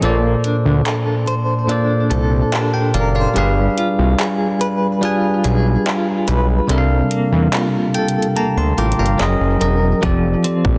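Smooth and tender, this contemporary R&B excerpt sits in a break where a bell-like, up-front tine electric piano carries the chords and adds fills at 2.1 and 7.5 seconds, over a fat sawtooth analog bass with a filter sweep, a bright, direct-recorded clean guitar playing arpeggios through tremolo and digital delay, and a quieter trap kit of handclaps, metallic hats and a hard-clipped kick that drops out at 8.4 seconds, set in light reverb with a dense, heavily limited modern master.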